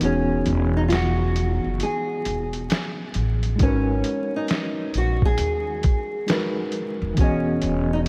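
Melancholic and hazy, this short lo-fi hip hop excerpt drifts at 67 BPM with a swung 16th feel: a fingerpicked nylon-string guitar carries the melody through lush chorus and delay over a reedy electric piano with fast tremolo, a woody pizzicato upright bass and a muffled, pitched-down sampler drum kit with a thumpy kick, as the harmony moves from Emaj9 to G#m9 and back inside a dreamy cathedral reverb laced with vinyl crackle.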